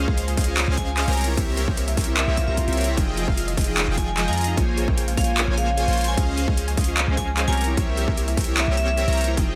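Future bass at 150 BPM in a half-time feel, this bittersweet, emotional excerpt from a longer piece turns through rich chords like Dbmaj7, C7b9, Fm9 and Bbm9, carried by a smooth, detuned supersaw riff with lush chorus, delay and sidechain pumping over a deep, boomy 808-style bass and an overdriven, hard-clipped kick. A trap kit adds handclaps and metallic hi-hats, while a round, tine-like pluck spins gentle arpeggios and a bright, ringing vibraphone played with hard mallets sings a melody through digital delay, entering at 0.8 seconds. An airy, breathy pad sits very quietly underneath, a faint electronic swell appears in the background at 2.4 seconds, and the mix is dry with little reverb.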